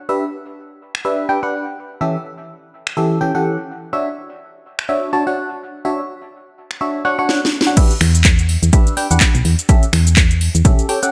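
Joyful and euphoric, this piano house excerpt in D major moves at 125 BPM with a swung 4/4 feel, as a biting, percussive FM electric piano riff with a phaser and sidechain pumping cycles through Em7, A7/E and Dmaj9. A layered, overdriven house drum kit with a cracking snare, metallic hats, cabasa, crash, finger snaps and handclaps joins at 0.9 s under a filter sweep, and a drum fill leads into the drop. At 7.8 s a dry, punchy analog kick arrives, followed at 8.0 s by a round, dark FM bass with sidechain pumping, all set in light reverb.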